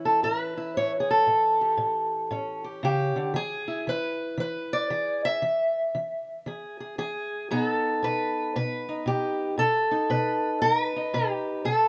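The recording has the rough feel of a home demo, with a light reverb around it. A single fingerpicked steel-string acoustic guitar carries this brief cut from a longer acoustic country blues piece, sitting up front with a dark, boxy parlour tone. The mood is laid-back and swaggering, set to a swung eighth-note feel in four. The guitar covers a low-to-high span across the full 11.9 seconds, moving from A7 to E7 at 3.3 seconds and on to B7 at 7.5 seconds. It is a relaxed, front-porch sound.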